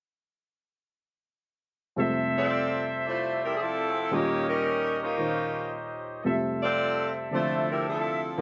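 A dry, open-air sound with slapback echo frames this brassy, joyful swing jazz cut from a longer piece, where a woody upright piano comps and a tight, clear trumpet section punches soft-attacked stabs with light vibrato from 2.0 seconds, before an edgy saxophone section carries the vibrato-laden melody up front from 2.4 seconds over a move from Fmaj7 to Eb7 and back.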